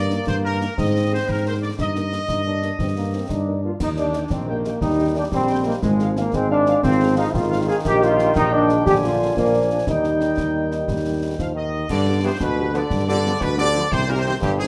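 A dark, up-front trombone section stands out most, entering at 3.1 seconds with tight sustained chords beneath this festive, rousing military-style march for wind band in a straight 6/8. The distant, roomy trumpet section carries the clear melody, while a euphonium with a soft attack, light vibrato and a vintage character sings a second line. A mellow, up-front tuba holds the bass, and a close-miked French horn section with gentle vibrato fills in accompaniment from the background. Concert snare, bass drum and clash cymbals with dark-toned cymbals sound acoustic, close and dry against the moderate studio reverb that surrounds the brass. The harmony stays rooted in E-flat major until a turn toward G7 and C minor at 11.9 seconds opens a new section before this fragment of a longer piece breaks off.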